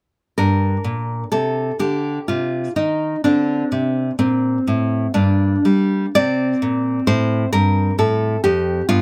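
Classical baroque-style dance in 3/4 and G minor, grave yet flowing at 63 BPM with uneven, rubato beats, played by a solo fingerpicked nylon-string guitar whose brilliant, up-front tone spans F2 to D5 from 0.4 to 9.0 seconds, moving through Gm, D5 and C5 in this brief cut from a longer piece, caught by close, detailed microphones with light reverb.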